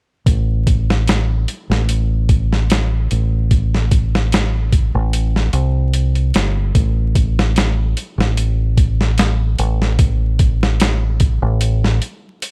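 Vinyl crackle sets a dark, cinematic mood for this trip hop excerpt in A minor, with a deep dub fingered electric bass and a boom bap sampler-style drum kit entering at 0.3 seconds at a lazy 74 BPM with a light sixteenth-note swing. The round, amped bass sits up front in its low register with tube saturation, while the pitched-down, compressed kit gives a thumpy kick, a medium-tuned snare and hi-hat a gritty, tape-toned character in studio reverb. A break arrives at 11.6 seconds, the bass dropping out at 12.0 seconds as the drums carry on to 12.5 seconds.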